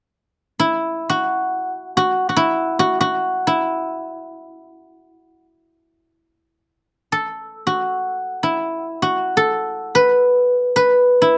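A solo guzheng, played with fingerpicks, enters at 0.6 seconds and carries this short cut from a longer piece of Chinese traditional music, its bright, silvery tone ringing in free time between E4 and B4. The mood is elegant and serene, with the acoustic instrument placed up front in a dry outdoor recording with little reverb, playing on until 11.4 seconds.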